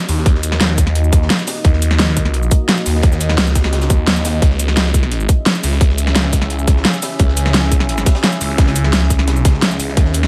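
Driving straight 4/4 drum and bass beats anchor this dark, tense, futuristic fragment, with an overdriven tight kick up front, a dubstep kit's huge snare, metallic hats and cabasa, and a very quiet gritty breakbeat kit beneath, while a swirling, thick phased saw bass rumbles low and a deep, moody ambient pad with chorus, reverb and sidechain pumping sustains Ebm and Dbm chords in a digital ambience.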